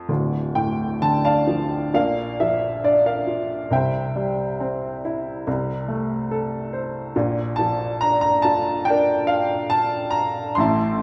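Peaceful and calm, this lyrical classical excerpt features a solo upright piano, woody, slightly detuned and up front, playing with a loose rubato feel across a span from D1 to C6 as the harmony moves from Dm through Bb, C and Am/C back to Bb, all bathed in the wet reverb of a church or concert hall.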